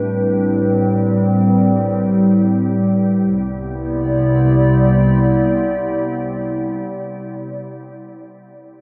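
Ambient music in free time, this excerpt from a longer piece drifts in C major with a peaceful, weightless mood, tuned a touch low at A4 = 436 Hz. Up front, a warbly tape-like pad holds sustained chords with a slow attack, its detuned, wave-folded tone sounding nostalgic and lo-fi yet dark, colored by chorus and its own reverb. Beneath it, an organ-like drone built from detuned sine and triangle tones sustains with a long release, its ring modulation and moving notch giving a calm, shifting shimmer under ensemble chorus. A rich studio double bass section sits in the background, bowed smooth and even with vibrato, until it stops at 5.8 seconds. The harmony moves from Am9 to Cmaj9 at 3.2 seconds, and a huge ambient reverb with a 7.9-second decay wraps the whole blend in a vast, floating space.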